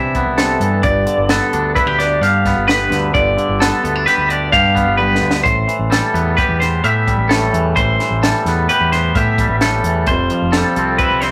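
This math rock and midwest emo excerpt moves at 130 BPM in an odd 5/4 metre with a straight feel, and its mood is intricate and wistful. A bright, compressed twelve-string electric guitar sits up front, picking arpeggios in a high register, while a clean, fingered twangy electric guitar plays accompaniment from low to middle register. Beneath them, a growling fingered electric bass, overdriven and direct and amped, anchors the low end. A compact cocktail drum kit with a dry, high-tuned snare and punchy kick comes in at 0.1 seconds, working hi-hat, kick, snare and toms, and plays a fill between 5.0 and 5.5 seconds. The harmony moves from Cmaj9 and G7 to Am9 and finally Fmaj9, all under moderate studio reverb in a rough rehearsal-room recording.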